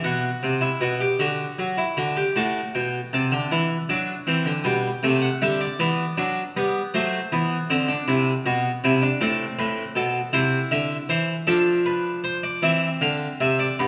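Stately yet lively, this baroque-style classical fugue unfolds in three parts on a solo harpsichord, moving in 12/8 metre with a straight feel. The harpsichord is an Italian-style instrument with three sets of strings, and its plucked tone comes across as full and brilliant, placed up front in the sound. Its range stretches from G2 up to A5, giving the three voices of the fugue plenty of room across the keyboard. The harmony passes through Bm, Am, G/B, F#dim and Am before arriving on F at 11.5 seconds. A reverberant recital hall surrounds the instrument with a generous 1.6-second decay, and the roughly 14-second passage is cut from a longer piece.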